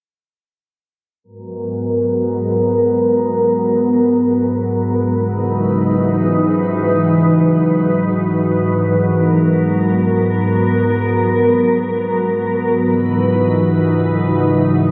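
A glassy FM pad sits up front, holding slow-blooming, warbling chords from 1.2 to 14.9 seconds, its vintage, ethereal tone thickened by ensemble chorus and softened by a low-pass filter that sweeps across its length. This hazy, spacious hip hop fragment floats in free time in G# minor, alternating G#m9 and C#m11. Captured on a phone amid club ambience, the sound is compressed and drenched in a huge, wet reverb with a long 8.1-second tail.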